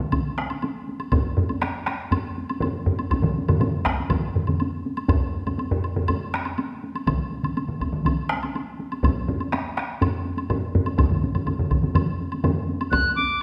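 A layered taiko ensemble drives this short cut from a longer Japanese traditional drumming piece, with four drum parts pounding on hard and heavy sticks at 122 BPM in straight 4/4, one group placed up front, another joining at 1.1 seconds, and the tempo speeding up throughout. A dry, woody woodblock ticks alongside the drums, and the whole ensemble sits in a reverberant recital hall for a driving, powerful mood. At 12.9 seconds a pure, up-front piccolo with a soft attack and vibrato appears briefly, ranging from D6 to F#6.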